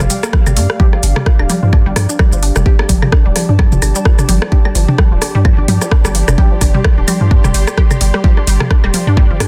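A dense, heavily limited digital-ambience mix carries this hypnotic, clinical minimal techno excerpt at 129 BPM with a swung 16th-note feel, where a punchy up-front electronic kick enters at 0.3 seconds under a saturated, pitch-dropping sub bass, a house kit of metallic hats, rim clicks and shaker, and a booming, tape-warm analog drum machine of claves, rim clicks and toms with delay, while a squelchy, resonant blip pluck riff with 12-bit sampler grit and dub echo pumps over a warbly, nostalgic pad on a G5 chord, joined by a very quiet, dark filtered dub chord stab from 0.8 seconds and a faint swarming granular drone from 1.9 seconds.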